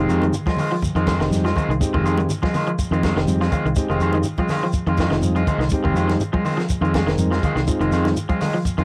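This driving, intense afrobeat excerpt comes from a home cassette recording with light reverb. It sits in F minor at 123 BPM in 4/4, with a swung sixteenth-note feel over a single Fm7 chord. The fingered electric bass anchors the groove with a dark, round tone, while a compact cocktail drum kit sounds dry and natural, with a high-tuned snare, a tight kick and hi-hat. In the background, congas with a thick-skinned, saturated sound are struck with hard hands, and a grainy, mellow shekere adds texture from a small room. A slightly broken-up, twangy electric guitar plays picked stabs through tape and analog delay, as a bright, clean semi-hollow guitar plays hollow-body arpeggios further back. A vintage combo organ with light vibrato supplies accompaniment until 8.2 seconds, dropping out just before the clip ends at 8.8 seconds.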